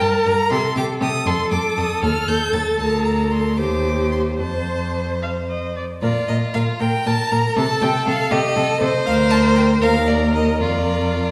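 A wet recital-hall reverb of 1.3 seconds surrounds this graceful, lively passage from a quick classical-period movement for string quartet in Bb major, flowing in a rubato 6/8 at about 73-81 dotted-quarter beats per minute. A clear first violin carries the high melody with smooth, even vibrato, and a close second violin plays a second line beneath it. The viola adds warm, expressive accompaniment with vibrato and portamento, a rich cello sits up front on the bass, and the harmony moves from G minor through F and Bb chords into a new section at 6.0 seconds.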